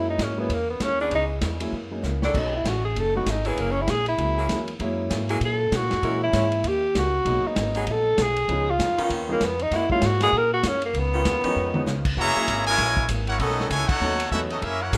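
Energetic and swinging, this big band swing excerpt opens with a mellow tenor saxophone solo, its vibrato up front in plate reverb. Beneath it play a woody pizzicato upright bass, a muffled, lo-fi vintage drum kit with dark cymbals, a baby grand piano with short sustain, a very quiet clean archtop guitar and a saxophone section holding sustained chords. Drum fills at 2.0 s and 11.6 s frame the solo, and at 12.2 s a bright trumpet section takes the melody while a nasal, straight-muted trombone section plays a second line in the background, all in the rough, reverberant sound of a home demo.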